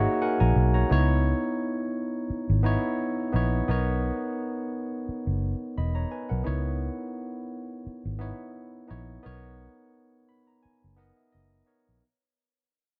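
A dark, warm production with light reverb frames this short cut from a longer piece. It is lush 1970s-style soul at 86 BPM in 4/4, with a gentle 16th-note swing and a smooth, silky mood in C# dorian. A barky tine electric piano, bright and clean through a combo amp, sits up front as accompaniment, playing a fill at the very start before the harmony settles. Beneath it, a vintage foam-muted fingered electric bass gives a round, amped low end, also up front. The chords move from G#9sus4 into alternating C#m9 and Bmaj9, and the electric piano adds another fill from 9.9 seconds as the whole passage fades out from 0.9 seconds to the end at 12.0 seconds.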